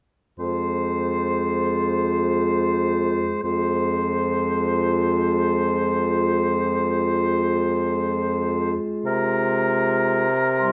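Opening at 0.4 seconds on an F minor chord, this excerpt from a slow, solemn and melancholic romantic movement for wind quintet in 6/8 at 38-45 BPM, played with rubato, sets an up-front oboe with light vibrato as the second line over a smooth, up-front bassoon bass, with a distant, roomy French horn and a soft-edged clarinet in the background filling the accompaniment, before an airy, hollow concert flute carrying the melody sounds a brief high C6 at 10.6 seconds, the ensemble heard in a moderate recital hall reverb.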